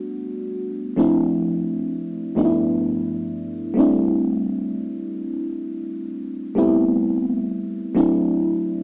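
A mellow FM electric piano opens alone, its round, dark tone sitting up front with a noise layer beneath each fast-attack note as it decays. This intimate R&B fragment, lifted from a longer piece, moves in an unhurried 6/8 with a straight feel, and the piano carries it solo for the full 8.8 seconds, ranging from G2 to F#4. Chorus and phaser give its soft, full-bodied sound a gentle shimmer. The harmony drifts through Gmaj7, Dm7, G13 and C6, then settles on Am7 before closing on D7. A light reverb and the character of a home cassette recording, with its small-speaker sound, lend the whole a warm, private mood.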